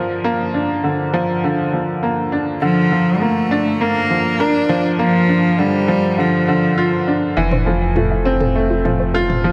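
Luminous and hopeful, this short piece of piano and strings electronica moves at 101 BPM in a straight 4/4, cut from a longer work. A bright upright piano with a worn, woody, slightly detuned character sits up front playing a riff from the start, its tone softened by a low-pass filter and trailed by tape echo over a Bb chord. At 2.6 s a single bowed cello joins with a melody, biting and nasal with light vibrato and an airy bow. At 7.4 s the harmony shifts to Fmaj7 and a build-up begins: a dark detuned saw bass rumbles on a low F with a beating, sustained weight, while a soft, round pluck in the background spins arpeggios through chorus and tape echo under a filter sweep. Overdriven electronic toms enter quietly behind them, and a lush hall reverb with a long tail gives the whole mix a spacious glow.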